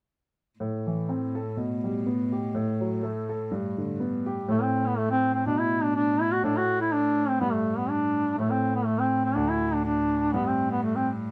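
Wild, dark and lively, this Celtic folk excerpt moves at 123 BPM in a swung 2/4, with a woody upright piano outlining chords such as Am, G and F#m/A while a cello holds a sul tasto drone on A2 with light vibrato and an airy bow from 0.6 seconds. At 4.5 seconds a mellow duduk enters up front with the solo melody, its soft attack, vibrato and roomy, distant character giving it a folk voice over sparser harmony that moves through Asus24, G5, D5 and Gadd9. Close, detailed microphones and light reverb keep the sound natural and intimate.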